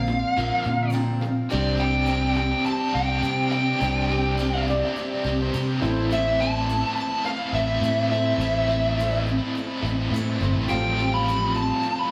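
Captured as a band playing live in one stone-walled room, with a wet reverb and a faint mains hum, this hopeful, open-road stretch of folk and heartland rock moves at 105 BPM in C major. A smooth, dark, overdriven lead guitar carries the melody up front, opening with a brief solo while a clear, very quiet baby grand piano adds a fill; bright picked steel-string acoustic guitar, a double-tracked electric guitar riff with tremolo, and a round, amped fingered bass fill out the band. From 4.4 to 10.7 seconds a mellow, woody, slightly detuned upright piano, its action noise audible, adds a second line in the background as the chords move from Bbadd9 through Csus2 and Am to Fadd9/A.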